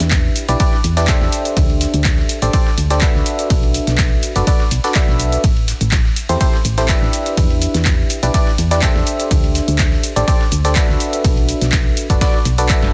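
A barking FM electric piano carries the riff in this soulful, bittersweet piano house excerpt, its biting, percussive attack and full-bodied tone coloured by chorus, cassette tape and dub echo, and pumped by sidechain compression. Beneath it, a solid FM bass sits round and dark with a fast, decaying attack, also pumped by sidechain compression. The electronic kick drum sits up front, punchy and tape-warmed after being re-recorded in a small room, entering at 0.1 seconds. A punchy analog drum machine supplies handclaps, hi-hat, ride cymbal, shaker and snare, with a short room on the snare, clap and hats. A very quiet, gritty sampler-style soul kit adds compressed hi-hat and a fat snare until 12.6 seconds. The harmony cycles through Em7, D7sus4, Bm7 and Am7 with a light swing, and the mix is dry, dense and heavily limited in a modern way.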